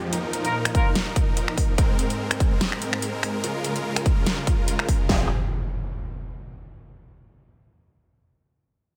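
Huge, detuned supersaw chords pump through this aggressive, chaotic heavy wobble dubstep excerpt in F minor at 145 BPM with a half-time feel, moving from Bbsus4 through Abadd9 and Db6 under layered drum kits with a punchy kick, metallic hats, finger snaps and a soft-clipped snare, while a mellow brass stab with delay flashes at 0.4 seconds, a downlifter and impact frame the passage, and a saturated, growling bass on F1 lands with an Fmadd9 chord at 5.1 seconds in a dense, heavily limited mix with light digital ambience.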